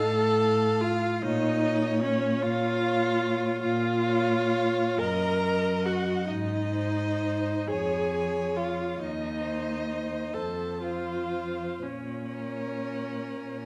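Classical slow romantic movement for string quartet in B-flat minor, solemn and melancholic, unfolding in a rubato 6/8 at 38-52 BPM counted in dotted quarters. A warm, distant first violin carries the melody with vibrato and expressive portamento over a smooth, even second violin line, while a focused, up-front viola supplies accompaniment and a rich cello holds the bass. Wet recital hall reverb and a dark production surround this passage cut from a longer piece, its harmony moving from F/A through E-flat minor and A-flat before settling back on B-flat minor.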